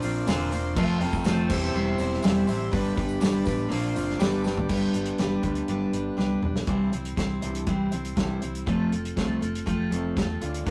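Jangly and hopeful, this straight folk-rock and heartland-rock excerpt from a longer piece sets an up-front, fresh-stringed dreadnought acoustic guitar and a twangy electric riff at the edge of break-up over round, dark fingered bass and a dry, damped 70s kit with a fat snare and tight kick, while a reedy, key-clicking tonewheel organ on a slow rotary speaker and a jingly tambourine sit in the background until about 4.7 seconds, a dark overdriven slide guitar slips in briefly from 0.8 seconds, and drum fills mark the turns into each new section of this rough, tube-saturated rehearsal-room recording with a small room's reverb.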